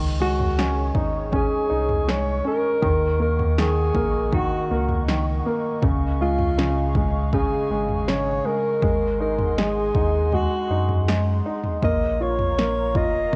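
Heartfelt and emotional, this pop ballad moves at a straight 80 BPM in 4/4 and sits in Db major, cut from a longer piece with a home-recorded cassette character and digital ambience around it. A clear, natural grand piano plays the accompaniment up front, treated with cassette tape, while an airy, breathy pad with a chorus effect holds sustained chords in the background, its slow attack and long release softening the edges. Underneath, a deep sub bass with an octave layer gives a full, mellow foundation, and a punchy analog drum machine enters at 0.4 seconds with kick, snare and toms. The standout is the dark alto saxophone, arriving at 0.2 seconds to carry the melody in a jazz-style solo with subtone and scooped notes, sounding both up front and distant in a roomy space. The harmony drifts through Dbsus2, Ebm7, Dbadd9 and Ab7 before settling on Bbm near 11.8 seconds.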